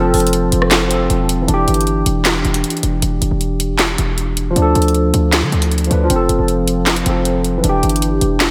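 Hip hop trap at 156 BPM in a half-time feel and E phrygian, melancholic and dark, with a barky tine electric piano dressed in lush chorus and a low-pass filter moving from F to Em7, Dm and back over a punchy, heavy 808-style bass with a sine body and noise layer, while an up-front electronic trap kit of sharp snare, metallic hi-hats, handclaps and rim clicks enters at 0.1 s, the whole dreamy mix soaked in a hall reverb in this short cut from a longer piece.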